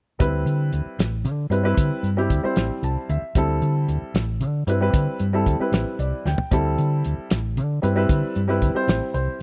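A dry, close, 1970s-style small-room sound frames this slick, funky electric jazz fusion excerpt in 6/8, where a damped drum kit with a fat snare and tight kick, a round hollow-body fingered electric bass and a mellow dark baby grand piano all sit up front over a D13sus4 chord, the piano slipping in short fills at 2.6 s, 5.7 s and 8.9 s and the drums adding a fill at 6.3 s.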